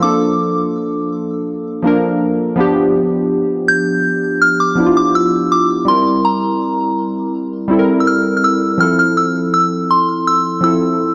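Dreamy and romantic, this 82 BPM R&B fragment in F major pairs a soft, pure FM synth bell melody, treated with chorus and digital delay, with round, detuned analog keys whose square and sawtooth tones carry a filter sweep, both up front in a lush hall reverb and a dark, warm production as the chords move from Bbmaj7 through G7 and C7/G to settle on Fmaj7 at 8.8 seconds.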